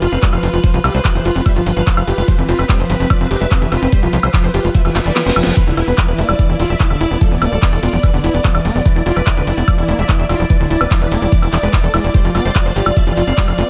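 Psychedelic trance in a straight 4/4, intense and hypnotic, this excerpt is driven by a knocking, tape-warm electronic kick up front and a tight, nasal sequencer bass with a punchy filter pluck, while a techno kit adds cracking snare, smooth hats, handclaps, ride, crash and woodblock, re-recorded in a small room. A squelchy, screaming acid riff with resonant filter sweeps, distortion, chorus and tape echo cuts through the mix, over a huge detuned supersaw melody set in the background and a bright, morphing wavetable pad with ring modulation and phaser, both pumping against the kick. Around 5 seconds a reverse cymbal sounds as the kick drops out for a brief drum fill, with light reverb over the whole.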